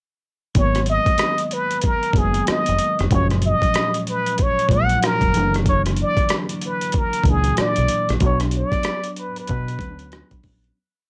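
A smooth, sensual neo-soul R&B piece in F# major at 94 BPM opens at 0.5 s with a worn, slightly out-of-tune tine electric piano playing pushed drop-2 chords with grace notes, over a gritty, overdriven sampler-style drum kit whose thumpy kick, hi-hat and rim click sit up front in a slow, swung sixteenth-note groove. A dark, round fingered bass joins with a punchy, laid-back line full of muted ghost notes and slides, while an up-front plunger-muted trumpet plays jazzy wah-wah hook phrases with light vibrato and scooped notes over G#m9, F#maj9 and F#7b13 chords. The cassette-tape home recording carries light reverb, and it fades out from 8.2 s as the harmony turns to Bm.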